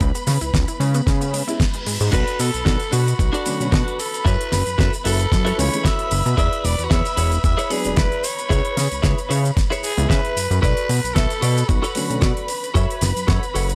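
Nu-disco at 113 BPM in B dorian, this sensual, sleek passage cut from a longer piece rides a lightly swung 16th-note feel in 4/4. A fat, detuned sawtooth analog bass sits up front beside a gritty, thumpy electronic kick, while a dry, damped 70s drum kit adds a fat snare, hi-hat, shaker and crash in a small room. A dark symphonic violin section holds lush, vibrato-laden chords throughout with vintage sampler grit and sidechain pumping, and a background unison pluck with ring modulation and tape echo plays arpeggios only until 2.0 s, as an electronic reverse cymbal sounds from 1.3 to 2.1 s. From 1.5 s a dark, boxy concert grand piano fills in accompaniment with sidechain pumping, and from 2.1 s a raspy, breathy tenor saxophone carries a growling, punchy melody with tape echo, joined by a bright, twangy, direct-recorded clean electric guitar riff bathed in lush chorus, all over a C#m7, Bm7, F#m7, E7 progression in a dry, gritty hardware sound with transformer saturation.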